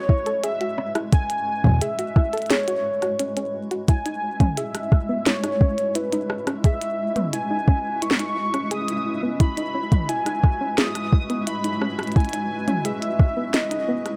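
Lightly reverberant, this eerie, cerebral IDM excerpt at 87 BPM in C# minor sets a velvety, chorused synth lead with vibrato and digital delay over a blurred, evolving granular cloud pad and a soft, round pluck playing arpeggios through tape echo, while an overdriven electronic kick sits up front beside a glitchy drum kit of tiny snare, clicky hats, rim clicks and toms, and a flickering, grainy texture joins in the background at 4.3 seconds as the harmony moves from F#m9 to C#m9.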